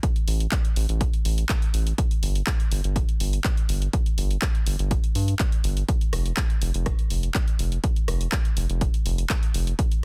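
A round, dark analog bass with a fast attack, tube saturation and sidechain pumping sits up front beside a punchy, tape-warm electronic kick and a layered house kit of handclaps, hi-hat and rim click, driving this expansive progressive house excerpt at 123 BPM in a dry, dense and heavily limited modern mix.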